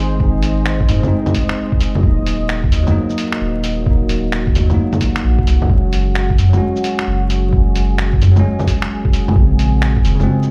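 Vinyl crackle and a large studio reverb wrap this short cut from a longer future garage piece, which sounds as if it were played on a big sound system in a bare room and then caught with light digital ambience. The mood is nocturnal and rainy, set on a swung 4/4 groove driven by a compressed, pitched-down, thumpy electronic kick that enters at 0.2 s and a muffled, tape-warm lo-fi sampler kit of bongos, finger snaps, hi-hat and shaker, both re-recorded in a small room. Underneath, a soft, round dub sub bass made from triangle and square waves holds sustained low notes with a fast attack. A deep, moody ambient pad of detuned sawtooth unison, sine and sub octave swells in with a slow attack and a long release, softened by chorus and its own reverb and pumped by sidechain. On top, a bell-like, bright and clean tine electric piano plays accompaniment with delay and the same pumping, moving through Ab, Ebm, Gbsus2 and Bbm7 before the music stops at 10.5 s.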